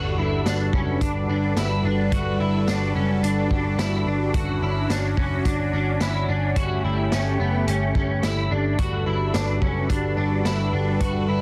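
A straight 4/4 pulse at 108 BPM carries this floating, ethereal dream pop excerpt in G lydian, with a vintage drum kit entering at 0.5 s with punchy kick, medium-tuned snare and hi-hat under a rolled-off top, while a dark, round, foam-muted picked bass sits up front. A swirling, detuned sawtooth analog pad holds soft-attack sustained chords through phaser and chorus, and a twangy, slightly broken-up electric guitar picks arpeggios through ensemble chorus and digital delay. The harmony moves from Gmaj7 to Dmaj7 at 4.3 s and A7 at 6.6 s, all within a small room and a dense, heavily limited modern master.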